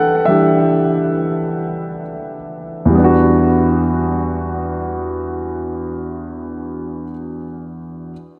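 Soaked in a huge, dreamy reverb, this late-night R&B fragment, cut from a longer piece, features a dark, mellow concert grand piano playing solo and up front in E minor at a slow 45 BPM in 6/8, its deep bass and natural tone colored by tape echo as it opens on an Em9 chord and carries a yearning mood through its 8.1 seconds.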